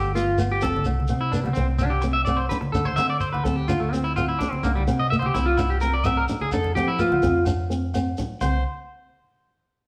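A straight 4/4 groove at 127 BPM drives this sunny, carefree highlife guitar band excerpt in C major, cut from a longer piece. A round, punchy hollow-body short-scale electric bass anchors the low end with a dark, amped tone. The shekere's grainy, dry shake, the ringing agogo bells and the bright, thin-skinned, low-tuned congas all join within the first second, with the bells and congas sitting in the background. Up front, a twangy electric guitar at the edge of break-up plays arpeggios through spring reverb, while a thumb-plucked flamenco guitar adds warm acoustic accompaniment beneath it. A clean electric guitar solo runs from 0.9 s over chords moving from Csus2 through Dm9 and C9 to F5, and the whole band plays live in one room with a wet stone reverb.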